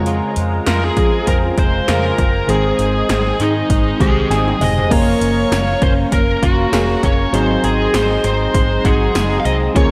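Dramatic and nostalgic, this 1980s-style pop excerpt moves at 99 BPM in 4/4 with a light sixteenth-note swing, its dreamy mix soaked in lush hall reverb as glassy, bell-like FM electric piano with chorus and phaser, a smooth analog pad, a clean direct-recorded electric guitar riff with ensemble chorus and tape echo, and a dark, round, foam-muted fingered bass carry the harmony from Dbmaj7/F through Ab, Gbmaj7 and Ab7. Electronic pad drums enter at 0.1 s with a punchy kick, metallic hats, tambourine, and gated reverb on the snare and toms, and a bluesy, distorted lead guitar joins at 0.7 s with the melody, followed by mellow, detuned sawtooth synth brass stabs in the background from 1.0 s. Just before the second section begins at 4.9 s, the electric piano and drums each play a fill.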